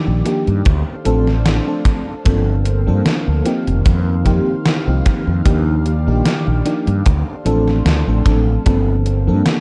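A round, dark fretless electric bass sits up front in this nostalgic, woozy vaporwave passage, its tone thickened by tube saturation as it enters at 0.1 seconds. The track moves at a slow 75 BPM in 4/4 with a light 16th-note swing, in G minor, cycling through Ebmaj9, Dm7, Gm11 and F7sus4. An FM electric piano with a soft pad layer carries the accompaniment, dreamy and mellow, shimmering through tremolo, subtle chorus and tape echo. Beneath it, a thick, detuned unison pad holds sustained chords, with a slow attack, a warbling vintage character and chorus. A gated 80s digital drum machine supplies hi-hat and snare, overdriven, coated in 12-bit sampler grit and bathed in gated reverb and tape echo, while a tight, bright acoustic kick with the same grit arrives at 0.7 seconds. Small room ambience and an echo-heavy mix wrap this brief cut from a longer piece in a hazy glow.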